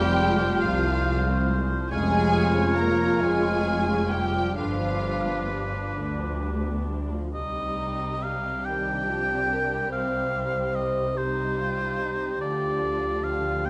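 A clear, close oboe with vibrato stands out over a veiled, con sordino violin section carrying the melody in this bittersweet, moving excerpt of an orchestral film score, unfolding in a rubato 6/8 at roughly 43-49 BPM and settling into C minor at 7.3 s. An airy, hollow flute adds a second line until 7.0 s, while a muted second violin part sits in the background, distant violas accompany, a mellow, roomy horn section holds sustained chords, and dark cellos with double basses provide the bowed bass. A moderate scoring-stage reverb and a faint mains hum surround the slow, emotional orchestra.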